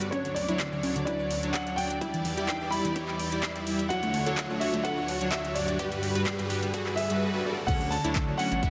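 Progressive house at 127 BPM in D major, uplifting and hopeful, cut from a longer piece and built as a build-up that breaks into a drop at 7.7 seconds. A lush, warbling unison pad holds bright sustained chords with chorus and sidechain pumping, while a round, detuned analog pluck spins arpeggios through a filter sweep, its delay trailing behind. An intimate concert grand piano carries the melody in a high register, its action noise audible and its tone smooth and vintage, alongside soft supersaw stabs that pump with the kick. Underneath, a punchy layered electronic kick sits in the background, a deep house kit with metallic, overdriven hats, cabasa, handclaps, toms and crash re-recorded in a large room, and a riser climbs through the build until the drop at 7.7 seconds, with a drum fill at 7.4 seconds. At the drop a fat, saturated sawtooth bass and a very quiet, dark, wave-folded pluck join the texture, all of it set in a moderate hall reverb over a Dmaj7, Em7, Dmaj7, Gmaj7 progression.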